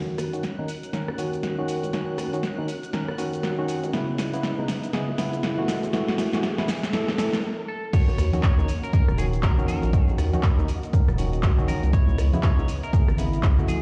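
A moody, deep house passage opens on barky tine electric piano stabs up front, filtered and pumping with tape echo, over a faint riser, a bright chorused analog string pad, a very quiet silky string machine, a rubbery square bass in the background and an analog drum machine fill that builds to a stop at 7.4 seconds. At 7.7 seconds a clean, scooped electric guitar melody with tape echo enters. The drop at 7.9 seconds brings a punchy electronic kick up front, followed by ringing bongos and congas, all over minor seventh chords with a swung feel and set in an echo-chamber reverb with a cassette-tape haze.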